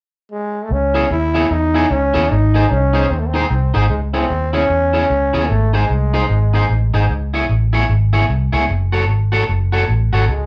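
Ska at 150 BPM with a swung feel in C# harmonic minor, energetic and mischievous, cut from a longer piece and played live in one room, where a raspy, growling trombone carries the melody with vibrato and slapback echo from 0.3 seconds, a dark, foam-muted fingered electric bass sits round and up front from 0.7 seconds, and an electric guitar at the edge of break-up adds twangy, picked accompaniment with its own slapback echo over chords moving from C#m to G# and finally F#m at 8.7 seconds.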